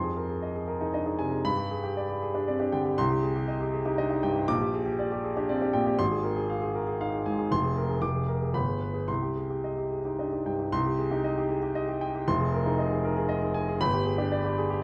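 A solo concert grand piano opens on a dark F minor seventh chord, launching a passionate, agitated classical piano study in C minor, in 3/4 at about 118 BPM with a free, rubato feel. The piano sits up front with a warm tone, deep bass and long sustain, ranging from low F1 up to D6 as the harmony moves through G, C minor and darkened minor and diminished colours before settling on C minor near 9.1 seconds. Moderate recital-hall reverb surrounds it, and the opening material returns at 10.7 seconds before this fragment of a longer piece cuts off on a G chord.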